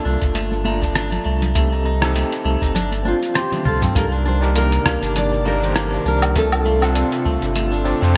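A lightly swung sixteenth-note groove in 4/4 comes from a dusty, gritty sampler-style soul kit of cabasa, hi-hat, rim click, toms and woodblock, underpinned by a deep analog electronic kick, a round, up-front sub bass and congas tucked close and dry in the background, with a drum fill arriving just before the 4.0-second mark. In this relaxed sunset chillout excerpt, a barky overdriven tine electric piano with tremolo and a twangy, scooped clean electric guitar playing arpeggios both open under filter sweeps, while a full-bodied fingerpicked nylon-string guitar with audible finger squeak takes the melody from 3.1 s and an airy, breathy, detuned pad with sampler grit drifts in at 4.5 s. The chords move through jazzy ninth and suspended shapes, bathed in a lush hall reverb and a bright 1980s-style digital sheen.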